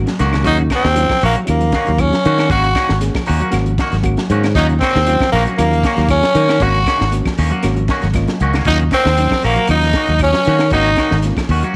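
Defiant and driving, this short afrobeat excerpt at 117 BPM in Eb dorian swings lightly over a crunchy, gritty breakbeat kit with a high-tuned snare, a punchy, growly fingered bass up front, twangy arpeggios from a guitar through a small old amp, chorused clean guitar stabs, woody claves and a reedy, worn, slightly out-of-tune electric piano with overdrive that adds fills around 3.0 s and 7.9 s, while a raspy growling tenor saxophone carries the melody and a brilliant growling trumpet joins on a second line at 4.6 s, all alternating between Ebm7 and Ab9sus4.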